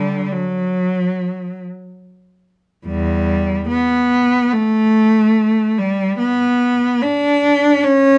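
A single bowed cello, rich and focused with a smooth top and vibrato, sits up front in this brief, mournful classical fragment in B minor, tuned to A4 = 436 Hz. Moving in free time across a range from E2 to D4, the unaccompanied line has a meditative, expressive character. Light reverb surrounds the instrument through the 8.2 seconds of this passage, which is cut from a longer piece.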